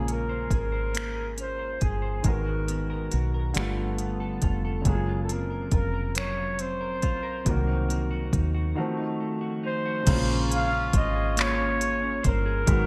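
In a slow, straight six-eight at 46 BPM, this yearning late-night R&B piece in Bb minor sets a breathy, whispered flugelhorn melody over a dark, fingered clean electric guitar with lush chorus and digital delay, a concert grand piano with deep bass, a round, foam-muted dub bass, and a smooth, tape-toned drum kit of soft kick, hi-hat, crash, finger snaps and handclaps under gated reverb, all in a bright 1980s-style digital sound, before a break at 8.8 seconds and a punchy horn section entering with stabs at 10.1 seconds.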